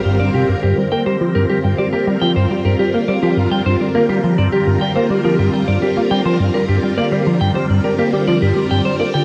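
Mysterious and expansive, this short cut from a longer piece of ambient, sequencer-driven space music moves at 104 BPM in a straight 4/4, resting on a G minor seventh chord. A swirling, vintage string machine sits up front with bright sustained chords, its slow attack and long release colored by ensemble chorus and phaser. Beneath it, a punchy, funky analog bass riff with a quick filter pluck carries the pulse through chorus and analog delay, while a deep, round analog bass sounds only very quietly for the opening 0.6 seconds. A clean electric guitar enters at 0.2 seconds with picked arpeggios trailed by analog delay, and a very quiet bubbling texture of resonant, randomly stepped filter movements glimmers high above. The whole piece sits in a moderate plate reverb with a cassette-tape character.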